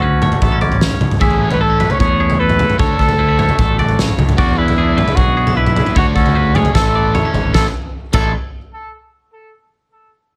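A bright, wistful math rock and midwest emo fragment at 152 BPM in A major opens with a vintage-toned trumpet carrying the melody with light vibrato and tape echo, over two twangy clean guitars (one picking a bright accompaniment, the other playing scooped, fingered arpeggios tucked behind) and a growling, overdriven picked bass. A loose, acoustic drum kit joins at 0.2 seconds, sitting up front with a punchy kick, fat snare, dark cymbals and a pumping room sound, and a double-tracked, biting overdriven guitar riff enters in the background at 1.2 seconds. The chords move through Dmaj7, Amaj9 and E9, with a drum fill at 6.8 seconds, all in a dry, close sound.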